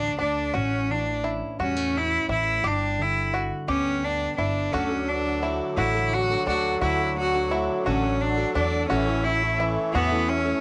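A bright, nasal cello carries the melody up front in this anthemic folk piece in D major, moving at 58 BPM in a straight 6/8 over twangy fingerpicked banjo arpeggios, a thumpy pizzicato upright bass and a fingerpicked jumbo acoustic guitar in the background that drops out at 6.8 s, while from 4.7 s the build-up gathers a distant, clear trombone second line, a picked acoustic guitar with audible finger squeak, a very quiet boxy upright piano and a shimmering, reedy musette accordion holding sustained chords, all set in a moderate reverb with the hazy feel of a home cassette recording.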